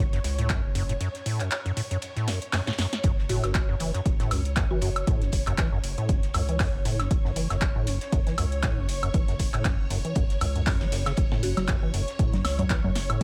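A swung 118 BPM acid house groove in F# minor, hypnotic and driving, rides a punchy, tape-warm electronic kick from 0.5 s, an electro analog drum machine with congas, handclaps, metallic hats, woodblock and snare, and a very quiet, dry 70s kit adding dark ride and snare, with a drum fill at 2.3 s, while a rubbery, resonant acid bass riff with overdrive and delay sits over a round analog sub bass that pumps with the sidechain, a lush vintage string machine holds phased, chorused F#m chords that also pump, and a woody, buzzing marimba briefly appears in the background at 3.3 s and again at 11.4 s, all in a small room ambience.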